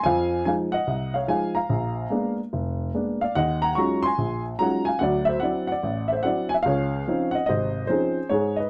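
Warm and swinging, this short solo jazz passage is carried by a dark upright piano that sits up front, its woody, slightly detuned tone and audible action noise lending an intimate, natural character. The piano spans a broad register over a swung progression that moves from Fm7 through Bb7b9, Ebm11 and D9 before settling on Dbmaj9 near 6.7 seconds. Light reverb and a dark, warm production frame the 8.7-second cut from a longer piece.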